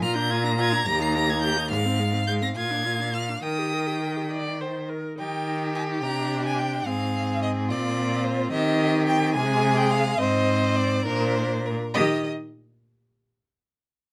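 A quick classical-period string quartet movement in 6/8 with a rubato feel, spirited and cheerful, where the first violin sings the close, expressive melody up to C7 with vibrato, soft attacks and portamento, the second violin adds a smooth, even second line, the rich viola fills in the accompaniment, and the clear, focused cello holds the bass up front, each part a single bowed player with vibrato in light reverb, in a passage cut from a longer piece that arrives on an Eb chord at 12.0 seconds.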